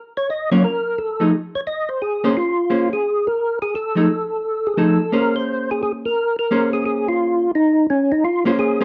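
A percussive tonewheel organ carries the melody from 0.2 s, its fat, clean tone marked by key click and third harmonic percussion, turning slowly through a rotary speaker with chorus vibrato. This bluesy, soulful jazz cut, taken from a longer piece, swings at 174 BPM in 4/4 and sits in Bb minor. A vintage hollow-body electric guitar joins at 0.5 s as accompaniment, its dark, picked sound staying clean and up front beside the organ. The harmony moves through Gbmaj7, F7#9 and Bbm9 across two matching passages, the second beginning at 5.1 s. A moderate studio reverb surrounds the short excerpt within a dusky, warm production.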